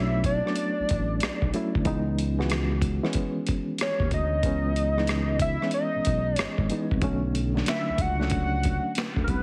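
Heavily compressed with a radio-like tone and a light digital ambience, this introspective, soulful neo-soul R&B excerpt swings over Bm9 and C#m9 chords as a hollow, woody square lead sings the melody through chorus and tape echo, a reedy electric piano shimmers with fast tremolo, a smooth, dark synth bass holds the low end, and from 0.2 seconds a gritty, pitched-down boom bap sampler kit sits up front with its thumpy kick, high-tuned snare, rim clicks, hi-hat and finger snaps.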